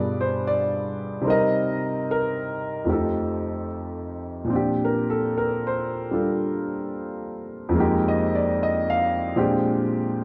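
A solo grand piano, smooth and vintage-toned with long sustain and an up-front presence, carries this intimate, late-night jazz ballad in Bb major at 74 BPM in 4/4, with a gentle swing on the eighth notes. Cut from a longer piece, the 10-second passage moves through rich harmonies such as G7b9, Cm7 and F9 before settling on Bb69 at 4.5 seconds and closing on Bb13 at 9.4 seconds. A moderate reverb gives the sound the spacious bloom of a church or concert hall.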